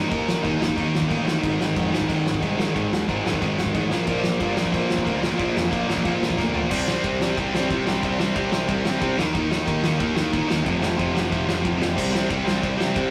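Punk rock at 182 BPM with a rebellious, upbeat drive, this excerpt cut from a longer piece sets a bright, overdriven, double-tracked stack guitar riff up front over a fuzzy picked bass sitting in the background and a distant, roomy indie drum kit with dark cymbals, a fat snare and a tight kick, whose fill at 6.4 seconds leads into the second section, all caught in a rough rehearsal-room sound with saturation and a moderate stone-room reverb.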